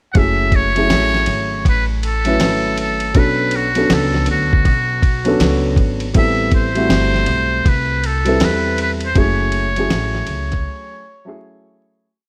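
Vinyl crackle and studio reverb frame this short, smoky, nocturnal jazz-hop piece in F# minor, moving at 80 BPM in 4/4 with a swung sixteenth-note feel. A lo-fi, sampler-style drum kit, compressed, pitched down and muffled, lays a boom-bap beat with a thumpy kick and medium-tuned snare under a swung ride cymbal. An acoustic upright bass walks beneath it with woody, pizzicato lines and chromatic approach notes, while a dark concert grand piano plays mellow, rootless voicings in a pushed chord rhythm through F#m9, Bm9 and Am9 before returning to F#m9. Up front, a trumpet with a metal mute delivers a buzzy, breathy, whispered solo built from short song-like motifs, treated with tape echo. The whole track fades out from 9.2 seconds, and the drums drop away at 10.7 seconds for a brief break, leaving the trumpet to trail off by about 11.4 seconds and the piano to continue until about 12.1 seconds.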